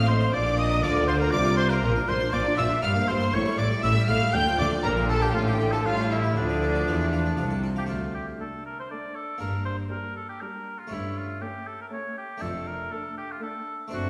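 A stormy, dramatic baroque-style concerto movement in D minor opens at once at 119 BPM in 3/4, with an up-front warm oboe and a rich, vibrato-laden violin section sharing the melody over a second violin line in the background, a smooth, distant viola section and a brilliant, airy harpsichord filling in the accompaniment, and a bright cello section alongside a focused double bass section on the bass, heard from further back in a wet recital hall in this fragment cut from a longer piece.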